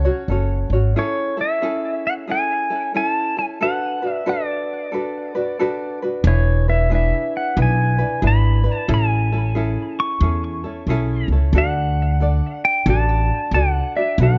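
Hawaiian in A major at a languid, swung 91 BPM, dreamy and unhurried: an up-front electric pedal steel guitar, clean and compressed, carries the fingerpicked slide melody with volume swells and tape echo over a bright, light, thumb-plucked tenor ukulele moving through chords such as Amaj7, D6 and E7, while a woody, thumpy pizzicato upright bass sounds briefly at the start and returns prominently at 6.2 s, all set in a small room with light reverb and a soft, rolled-off top end.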